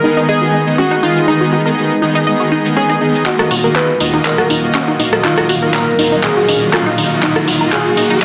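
Driving and bittersweet, this progressive house excerpt opens with a punchy, catchy plucky unison lead carrying the melody through lush chorus and tape echo, over a shimmering, ethereal ambient pad with slow-attack chords, smooth supersaw stabs with delay, and a tight sequenced synth whose bright arpeggios move through a filter sweep. A layered electronic pop drum kit sits up front from 0.2 seconds, with cabasa, handclaps, rim click and warm hats. From 3.3 seconds a build-up and drum fill begin, with a fat, thick analog bass entering in the background at 3.5 seconds and a very quiet riser at 4.4 seconds, all set in a lush hall reverb under a dense, heavily limited master.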